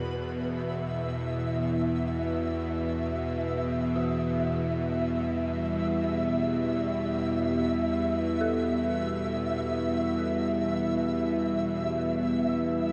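Unsettling and cavernous, this dark ambient drone in E minor drifts in free time, cut from a longer piece and resting on a single Emadd9 chord throughout its 12.9 seconds. Up front, a tense, string-like bowed drone holds the low register between E2 and B2, its sawtooth body roughened by a noise layer, ring modulation and vibrato, with slow attacks and long releases bathed in its own reverb. Above it, a sweeping resonant pad sustains chords from E3 to E4, bright and detuned, evolving through a filter swell and thickened with chorus. High on E5, a flickering grainy texture of granular, detuned triangle tones hovers faintly in its own reverb. From 4.0 seconds a very quiet, eerie FM bell enters with inharmonic, decaying arpeggios between F#4 and A4, lightly chorused. A wet cathedral reverb with a 5.2-second tail makes the space feel vast and hollow.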